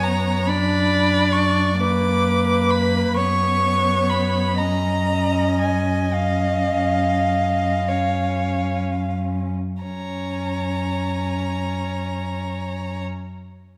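A cut from a longer slow romantic movement for string quartet opens with a close, smooth first violin singing a tender, lyrical melody with vibrato, over a second violin line, a more distant viola accompaniment and an intimate cello bass played sul tasto with an airy bow and soft attack, all in a rubato 12/8 at 29-47 BPM in F# major that slows down through its first 9.8 seconds before the harmony comes to rest on F# at 9.8 s, the quartet bathed in a wet scoring-stage reverb of 1.7 s.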